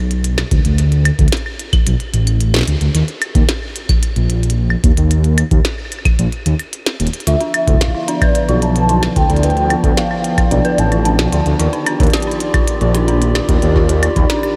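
A dark, detuned saw bass stands out most in this cerebral, eerie IDM excerpt, its rumbling, beating unison tone sitting up front from the start at 111 BPM in D dorian. A glitchy drum kit of claves, clicky hats and a tiny snare carried on tape echo enters at 0.1 seconds, followed at 0.5 seconds by an electronic kick with a deep, analog, tape-warm thump. At 7.3 seconds three parts arrive together: a lo-fi, nostalgic pad with slow-attack chords that pump with sidechain compression, an inharmonic FM synth bell playing arpeggios through chorus, phaser and diffuse ambient delay, and a mellow, warbling lead with vibrato and 12-bit sampler grit. The lead sings only until 11.3 seconds, while the pad and bell carry on to the close as the harmony moves from Dm69 to Ebmaj9. The whole mix is dreamy and soaked in a huge ambient reverb that lends the vintage textures a haunted, distant glow.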